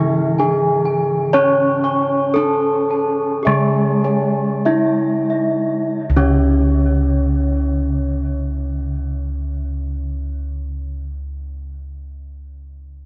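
This hypnotic, stately fragment of Javanese gamelan music opens with all five bronze parts sounding together. It moves in a straight 4/4 at 44-68 BPM, slowing down over the first 6 seconds before a new section begins at 6.0 seconds. A bronze metallophone carries the melody from C#4 to C#5 with a tape echo, over a lower metallophone accompaniment from C#3 to C#4. Above them, bossed gongs and another metallophone with tape echo play arpeggios in the C#5 to C#6 register, while bossed gongs struck with padded beaters supply a round, mellow bass. One metallophone is struck with a wooden mallet and sits mid-forward and up front. Another, played with a horn mallet, rings bright and airy, its paired tuning producing shimmering beats. Everything floats in a dreamy, cassette-tinged mix soaked in cathedral reverb with a long 6.8-second decay.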